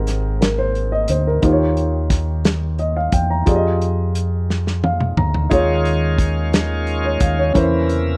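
Slow gospel in 6/8 at 59 BPM, this short cut from a longer piece feels uplifting and hopeful, tuned slightly high to A4 = 444 Hz. A warm grand piano carries the accompaniment up front, intimate and natural with audible action noise, while a round, dark fingered electric bass sits close beneath it. A soul drum kit with a small-room, mid-forward sound, tight kick and rolled-off top plays hi-hat, kick, snare and toms. Between 4.5 and 5.5 seconds the drums and piano both play fills, and at 5.5 seconds a bright tonewheel organ enters with full, shouting sustained chords, clean key click and a fast rotary speaker. The harmony moves through Abmaj9, Eb9 and Fm9 to Eb9sus4 and C7b9/E, all in a dry, close 1970s-style studio sound.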